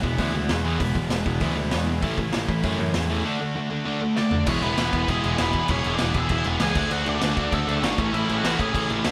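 A rowdy, rebellious punk rock cut at 196 BPM in E mixolydian opens with a raw garage drum kit, saturated and up front with a punchy kick in a pumping small room, beside a growly overdriven picked bass, while three distorted guitar riffs sit in the background (one bright and overdriven, one high-gain and double-tracked, one sludgy) over E, A and D chords, until a drum fill at 4.2 s ushers in a nasal lead guitar melody with a parked wah, the band captured playing live in one room with light reverb.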